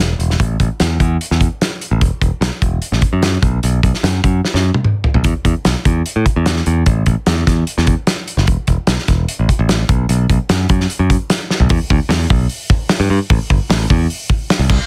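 Math rock with a midwest emo tinge, this short excerpt moves at 149 BPM in a straight 4/4 in E minor, its mood wistful and restless. A bright, picked electric bass opens at 0.0 seconds and stays up front, its direct, punchy tone ranging from E1 to A2. A loose indie drum kit joins at 0.2 seconds, sounding acoustic and small-roomed, with a fat snare, a punchy kick, dark cymbals and a rolled-off top, while hi-hat, crash and toms fill out the kit. Drum fills land at 4.4 seconds and again near 11.5, just before the music shifts into a new section at 11.7 seconds that runs to the cut. Light reverb sits over a dense, heavily limited modern master, keeping both parts close and forceful.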